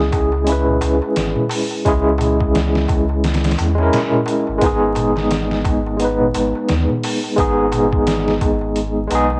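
An overdriven tine electric piano sits up front in this brooding, smoky trip hop fragment, its bright, barky tone pushed through a combo amp and shimmering with fast tremolo and tape echo. Beneath it, a round, sine-like sub bass holds deep, sustained, mellow notes that carry the low end. A sampler-style drum kit of hi-hat, thumpy kick and medium-tuned snare sounds compressed, pitched down and gritty, with a swung sixteenth-note feel and the grain of cassette tape. In the background, a crisp metal-shell darbuka played with soft hands adds a live-room acoustic texture. The harmony moves from C#m to G#m at 4.6 seconds, and the whole piece carries a home-cassette character with vinyl crackle, dulled highs and a light reverb.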